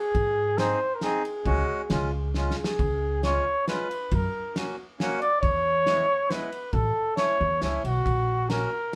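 Alpine folk in a bouncy, festive three-beat dance, cut from a longer piece, where a warm flugelhorn carries the melody up front in a classical style with vibrato and a roomy, distant tone. A woody, thumpy pizzicato upright bass and a small-room acoustic drum kit with a fat snare, tight kick, ride cymbal and rolled-off top drive it along, with a short drum fill at 2.4 s. A clear, reedy single-reed accordion joins at 0.6 s with accompaniment, and moderate reverb places the band further back in the room.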